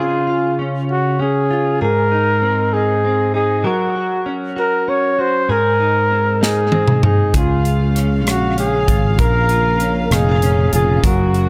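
A six-eight pop ballad in Db major at 65 BPM, this swaying, romantic passage is cut from a longer piece and sits in an echo-heavy mix with light reverb and small room ambience. A close-miked flugelhorn carries the jazz-style solo melody with vibrato and a soft attack, its tone treated with analog delay. Beneath it, a clean, double-tracked electric guitar, recorded direct, picked and compressed, supplies accompaniment with its own analog delay, moving through Db, Ab, Gb and Ab before returning to Db and then Bbm. A polished studio drum kit, airy and punchy, with a medium-tuned snare, enters with a fill at 6.4 seconds, using hi-hat, kick, rim click, snare and toms. A growly, bright fretless bass follows at 7.3 seconds, and a dark chamber string section, bowed sul tasto with light vibrato and a soft attack, adds intimate sustained chords low in the blend from 7.4 seconds.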